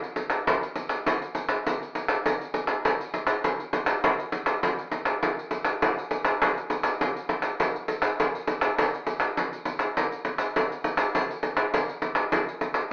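A jingly acoustic pandeiro opens this playful, sunny samba fragment, sitting up front with a small-room character in a straight 4/4 feel. The recording has a telephone quality and a wet studio reverb, giving the sense of a band playing live together in one room. A new section begins at 2.9 seconds and carries on until the cut at 12.9 seconds, taken from a longer piece.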